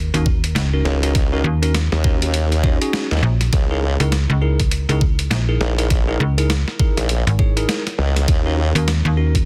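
A snappy, metallic-edged FM slap bass anchors this swaggering, funky glitch hop excerpt, sitting up front from the very start at 101 BPM in 4/4 with a swung sixteenth-note feel in C# dorian. An electronic, very quiet sub drop marks the opening impact over the first 1.2 seconds. A gritty, pitched-down sampler-style kit of hi-hat and high-tuned snare comes in at 0.1 seconds, joined at 0.3 seconds by an overdriven, knocking kick, both given studio reverb. From 0.9 seconds a formant-sweep wobble bass built from sawtooth and sine tones joins the FM bass up front, sustained and compressed with chorus, before dropping out at 8.7 seconds. Above the low end, a clean, bell-like tine electric piano plays stabs with sidechain pumping and dub echo. The harmony moves from D#m7 to C#m69 and back to D#m7, all inside a digital ambience and a dense, heavily limited modern master.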